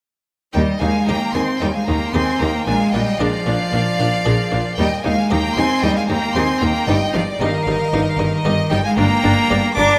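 A moderate concert-hall reverb surrounds this lively, festive excerpt from a baroque-style concerto movement in Eb major, moving at 114 BPM in a straight 4/4. A solo cello, smooth, even and up front, carries the melody in its tenor register with rich vibrato. A close, expressive violin section also carries the tune high above it, while a second, clear and intense violin section adds a line beneath. In the background, a focused viola section holds an inner accompaniment, a lush studio cello section and a close double bass section anchor the bass, and a dry, muted buff-stop harpsichord plucks lute-like chords in the Italian style. The parts enter together within the first second, and the harmony moves from Eb through Bb7 and Eb/G before settling on Gm at 9.0 seconds.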